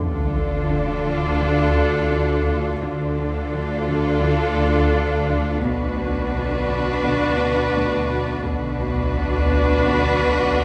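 Ominous and tense, this cinematic suspense cue sets a sul tasto violin melody with light vibrato over a dark second violin line with portamento, a distant viola accompaniment, a very quiet cello riff, bowed cello and double bass holding the bass in the background, and a swarming, detuned granular drone, while a huge, bright sub drop impact hits in the first 2.8 seconds and the harmony moves from D minor to B minor in a moderate scoring-stage reverb.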